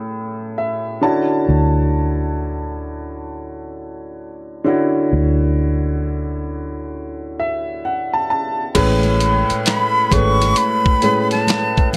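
R&B and neo-soul at a smooth, warm 66 BPM in A major, swung on the sixteenths, this 12-second excerpt opens with a woody, long-sustaining upright piano that carries the accompaniment throughout and plays fills at the very start and again from 6.9 to 8.8 seconds. A vintage muted fingered electric bass enters at 1.5 seconds, dark, round and foam-muted, sitting up front beneath the piano's Amaj7 and Dmaj9 harmonies before dropping out at 10.5 seconds. At 8.8 seconds the music shifts to an Amaj9 chord as a boom bap sampler-style drum kit arrives, pitched down and gritty, with a thumpy kick, high-tuned snare, hi-hat, handclaps and crash cymbal. Very quiet congas with a thin, damped skin join just after, and a silver concert flute takes the melody near the end, airy and expressive with vibrato and a crisp attack. A moderate small-room reverb gives the whole a close, intimate space.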